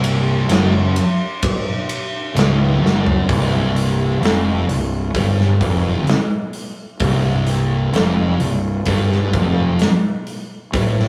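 A big acoustic rock drum kit sits up front in this sludgy, ominous stoner and doom metal excerpt, its bright cymbals and punchy kick driving a straight 4/4 pulse, with a fill from 2.8 to 3.3 seconds leading into the next section. Two thick, distorted fuzz guitars play the low riff, one dark and set in the background and the other warmer, while a fingered electric bass adds growly, overdriven fuzz underneath. The rough rehearsal-room sound carries a moderate small-room reverb, and the harmony moves from a rootless Ab7/C to C5 at 3.3 seconds.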